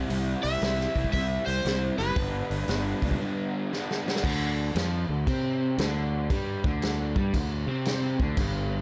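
Blues rock and southern rock in a power-trio vein, this swaggering, raunchy 116 BPM excerpt swings its eighths in 4/4 as a crunchy, double-tracked overdriven guitar riff and a round, punchy fuzz bass drive over C, G and Dm7 alongside a vintage kit with dark cymbals and a punchy kick, while a dark slide guitar played with fingerpicks sings a brief melody from 0.4 to 3.5 seconds before a drum fill at 3.7 seconds leads into the second section, all in a natural studio room with light reverb.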